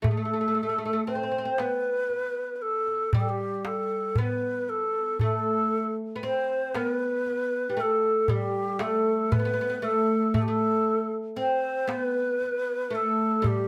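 A moderate studio reverb gives this hypnotic, soulful Arabic maqam ensemble piece a gently rounded room, and the ney, oud and darbuka all sit up front. The music moves at 116 BPM, counted in eighths, in a straight 10/8 metre, tuned to A4 = 441 Hz. The low end-blown cane ney carries the melody between G4 and C5 with a breathy, bright, reedy tone, tongued notes and vibrato; it carries a slapback echo and has a distant quality. Beneath it the acoustic fretless oud plays a second line from G3 to C4, its plectrum-plucked double strings sounding woody and bright. The metal-shelled darbuka adds crisp percussion, heard close and dry. All three parts play together throughout this 13.7-second section cut from a longer piece.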